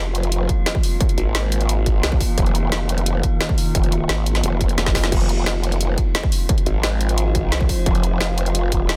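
An eerie, metallic drone and a saturated growl bass open this tense excerpt of dark technical drum and bass, the drone holding slow-attack FM chords that warble through chorus, phaser and its own reverb while the bass snarls and wobbles beneath through a formant filter. An overdriven drum kit joins almost at once with a woody snare, bright hats and crash cymbal, and a distorted, layered electronic kick arrives at 0.5 seconds, both sitting up front with the growl. The harmony rests on Eb5/F before moving to Fm at 5.1 seconds, just as a short drum fill closes. Around that point a detuned sawtooth wobble bass cuts in briefly from 4.1 to 5.1 seconds, its formant sweep adding a second wobbling voice in the low end. The sound is dry and dense, with a heavily limited modern master that keeps the whole piece pressing forward.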